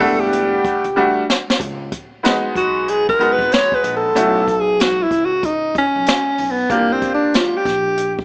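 Heard through a small speaker with light reverb and studio ambience, this smoky, mellow jazz-hop fragment swings gently over chords that drift from Em11 to C#9sus4 and on to Bsus2 and C9sus4. A brush kit with a boomy kick and medium-tuned snare plays a fill from 1.0 to 1.6 seconds, while a woody pizzicato upright bass sits low and a bright, slightly detuned upright piano comps up front until 7.6 seconds. From 1.6 seconds a close-miked alto saxophone takes a breathy subtone solo with vibrato and a slapback echo.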